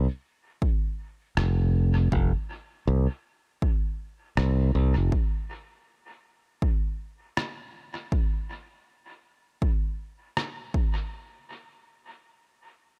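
Spacious and meditative, this ambient dub excerpt moves at 80 BPM in 4/4 with a gentle 16th-note swing, tuned slightly sharp to A4 = 441 Hz. A bright, growly fingered electric bass sits up front in the low register from the start until 5.1 s, while a punchy, layered electronic kick with overdrive enters at 0.6 s and carries on to 10.9 s. A muffled, pitched-down rim click with a tape-warm, small-room character adds dub echo from 1.4 s, and the mix stays dry of reverb but heavy with echo before shifting into a new section at 11.1 s.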